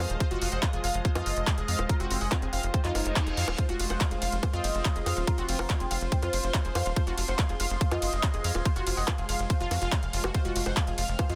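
Psychedelic trance with an intense drive, where an overdriven, up-front electronic kick and a bright-hatted drum kit with bongos, handclaps and ride push a tight, punchy sawtooth sequencer bass, while a thick, nasal detuned unison lead carries the melody over a lush unison pluck riff with tape grit and digital delay, a resonant, wave-folded drone with moving overtones and a reedy, gut-toned string section sit in the background under sidechain pumping, a reverse cymbal enters at 2.9 seconds, and a metallic, wobbling FM bass briefly surfaces at 4.5 seconds in a dense, heavily limited mix.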